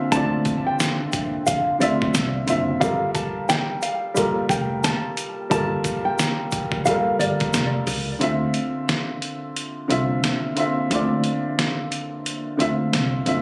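Reflective and dark, this boom-bap hip-hop passage, cut from a longer piece, moves at 89 BPM in D minor with a swung sixteenth-note feel. A dark upright piano sits up front with a mellow, slightly detuned vintage tone, colored by cassette tape and filtering as it carries the accompaniment over Dm9 and Gm9 chords. A thumb-plucked nylon-string guitar sings the melody with audible finger squeak and digital delay until about 7.7 seconds. Underneath, a woody pizzicato upright bass anchors the low end, while a gritty, pitched-down, sampler-style trip hop drum kit delivers a thumpy kick, medium-tuned snare and hi-hat, and an egg shaker with group handclap adds close percussion in the background until about 8.1 seconds. At 8.2 seconds the second section begins and the kick drops out, leaving piano, bass, snare and hi-hat in a small room ambience with club reverb and compression, captured as if on a phone in the room.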